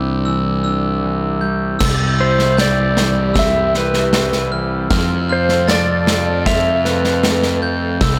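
A straight 4/4 pulse at 77 BPM carries this brooding, melancholic post-rock excerpt, where sparkling glockenspiel arpeggios struck with brass mallets and a dark, mellow electric guitar trailing tape echo sit over a fuzzy, overdriven picked bass, before a punchy big rock drum kit and a distant, floating symphonic string section enter at 1.8 s and a clean lap steel guitar with slide and volume swells sings the melody through tape echo from 2.2 s, set in a light studio reverb as the chords move from Cadd9 to C and F.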